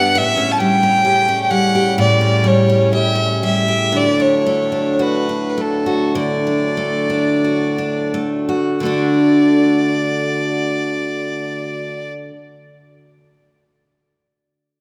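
A single bowed fiddle and a picked steel-string acoustic guitar open this Celtic slow air together, with a French horn section joining almost at once beneath them. The fiddle carries the melody up front, its bowed line smooth and even with a light vibrato and a rich tone. The bright acoustic guitar sits equally close, picking out the accompaniment, while the horns lay warm, sustained chords in a tight classical style at a lower level behind both. In D major and 4/4, the rubato pace drifts between 42 and 69 BPM, easing back until 8.8 seconds. An A7 harmony resolves to D at 3.9 seconds, and a new section begins at 8.8 seconds. A deep, wet church reverb surrounds the ensemble, lending this nostalgic, pastoral fragment of a longer piece a spacious, reflective glow.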